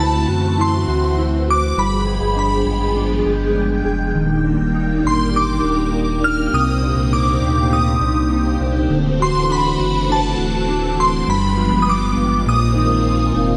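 A shimmering FM bell sits up front with a detuned, warbling halo, carrying a high, bright melody through a dreamy dream pop passage cut from a longer piece, with ensemble chorus and analog delay trailing each decaying note. Beneath it, a vintage string machine holds sustained sawtooth chords that swirl under a phaser's moving notch, its slow attack and long release giving the harmony a floating glow. A mellow, dark electric guitar plays clean, fingered arpeggios, also thickened by chorus and analog delay. A deep, round sine sub bass anchors the low end with sustained notes. The straight 4/4 feel moves through lush chords such as D9, G7b9, Ebmaj7 and Cm9 before settling on Bb9sus4, all washed in a 2.8-second plate reverb that makes the echo-heavy mix feel suspended and dreamlike.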